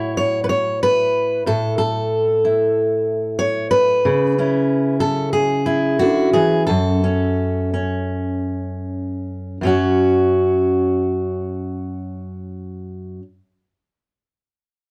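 Reflective and melancholic, this short folk passage is a solo fingerpicked steel-string acoustic guitar in F# minor, moving in a straight 4/4 at roughly 77-93 BPM, with the tempo slowing between 4.1 and 9.6 seconds. The guitar sits warm and up front, with an auditorium-like body and light reverb from a single room, spanning F#2 to C#5 as the harmony moves from F#m7/A through C#m to a bare F#5. A brief new section begins at 9.6 seconds before the recording, cut from a longer piece, ends at 13.2 seconds.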